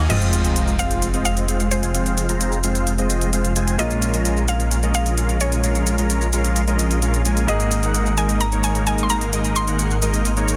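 Driven by a straight 4/4 pulse at 130 BPM, this euphoric, powerful festival progressive house passage is cut from a longer piece and moves through Fm, Bbm7 and Absus2. An electronic, layered dance drum kit carries the beat with crisp hi-hats, shaker and crash cymbal, given an overdriven edge and studio reverb. A sub drop lands in the background at 0.1 seconds as an impact, lasting until 1.9 seconds. From the very start, a huge, thick supersaw riff sits up front, its detuned unison saws compressed and shaped by a low-pass filter and delay. Beneath it, a lush, saturated saw bass with chorus anchors the low end. A woody, round, mallet-like FM pluck plays a bright, percussive melody with chorus and delay, while a clear, polished baby grand piano adds very quiet accompaniment under a dense, heavily limited modern master with light reverb.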